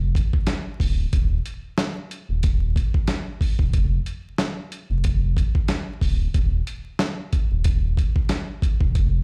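A boom-bap hip-hop groove rolls along at 92 BPM in 4/4, its sixteenths swung at 55%. The mood is tough yet reflective, carried by just two parts in this short cut from a longer piece. A dusty soul sampler-style drum kit enters at 0.2 seconds with hi-hat, a thumpy kick and a fat snare, sounding gritty, compressed and tape-warm, as if re-recorded in a small room, and it sits up front. Underneath, a deep, full sub bass with an octave layer holds from the very start, blending sine and triangle tones with a fast attack and sustained notes between D1 and F1, also placed up front. The overall sound carries vinyl crackle and the weight of a big sound system played in a bare room, with a large studio reverb around the mix.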